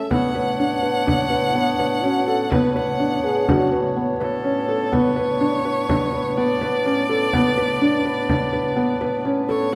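Bathed in a wet concert-hall reverb, this hopeful, restless fragment of contemporary chamber music in 5/4 sets a clear, biting violin melody with vibrato over reedy, breathing pedal harmonium chords, mellow felt-muted upright piano arpeggios with audible action noise, and a deep, soft-handed frame drum, while a solo French horn adds a brief second line from 1.5 to 4.0 seconds.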